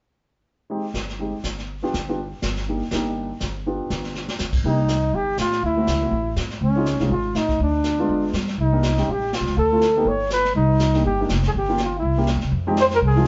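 Driving swing at 244 BPM in 4/4 carries this smoky, cool small-group bop excerpt, where a vintage brush kit with a high-tuned snare and punchy kick, a woody, thumpy upright bass on gut strings, and a dark, mellow baby grand piano comping through chords like Abmaj7, Cm9 and G7b9 set the pulse before a drum fill at 4.2 seconds ushers in a breathy flugelhorn melody with light vibrato at 4.7 seconds, all heard in a moderate stone room with a rolled-off top.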